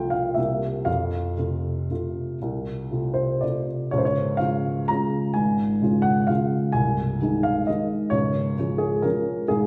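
Classical piano waltz, graceful and sparkling, played with rubato in three by a solo upright piano of dark, woody tone that moves into a new section at 3.9 s, its sound bathed in wet recital hall reverb and heard from further back in the room, in a passage cut from a longer piece.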